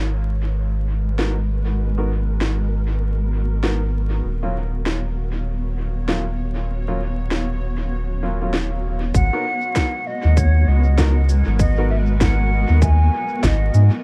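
A round, up-front dub sub bass anchors this deep, spacious ambient dub excerpt at 98 BPM in G# minor, beneath a blurred, evolving granular cloud pad, while woody upright piano stabs and an electronic snare and shaker, each carrying dub echo, enter at 1.2 s, before a tight electronic kick and a distant, hollow concert flute melody with vibrato arrive at 9.1 s, wrapped in a dark production with vinyl crackle.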